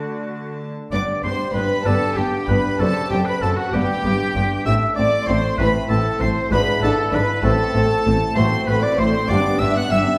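Classical baroque-style concerto music in 6/8, brilliant and festive, in which a distant, focused violin section and a clear, roomy oboe share the melody above a close, expressive violin second line, while a delicate fingerpicked gut-strung lute and a lush viola section, with vibrato and portamento in the background, fill in the harmony, a rich cello section carries the bass, and a smooth, even double bass section joins at 0.9 s, all heard from further back in a reverberant recital hall.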